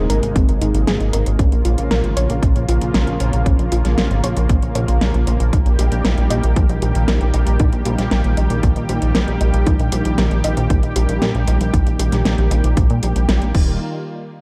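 Romantic and dreamy, this 13.8-second synthwave excerpt in Eb mixolydian moves at 116 BPM in a straight 4/4, with a glossy, nasal chorused synth bass and a punchy, overdriven electronic kick up front, a silky, detuned analog string pad holding sustained chords with ensemble chorus and sidechain pumping, a soft, round pluck tracing dark, chorused and delayed arpeggios under a filter sweep in the background, a pop drum kit with fat snare, metallic hats and crash in gated reverb, and a barely audible downlifter ending by 1.4 s, all set in a digital ambience over chords moving from Abadd9 to Bbm and Eb/Bb.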